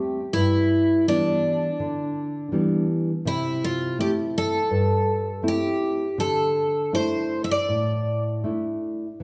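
A picked twelve-string acoustic guitar carries the melody up front with a shimmering, octave-doubled tone, its old strings giving a woody, full-bodied character as it sings over G6, C6 and Dsus2 before falling silent at 8.2 seconds. Beneath it, a thumb-plucked nylon-string guitar supplies dark, deep classical accompaniment in a rubato 4/4 that continues alone to 9.2 seconds. This passionate, mournful fado-style ballad, cut from a longer piece, sits in the wet reverb of a recital hall.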